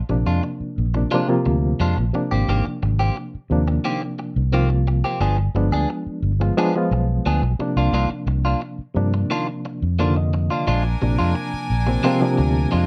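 A straight 4/4 groove carries this funky, bright jazz passage, cut from a longer piece, as a growly, up-front fingered electric bass holds the low end beneath a barky, reedy electric piano with fast tremolo and a clean, picked electric guitar with subtle chorus playing stabs, the piano adding a fill at 9.7 seconds before a biting, nasal chamber string section enters at 10.7 seconds with sustained chords, all in a dark production with light reverb.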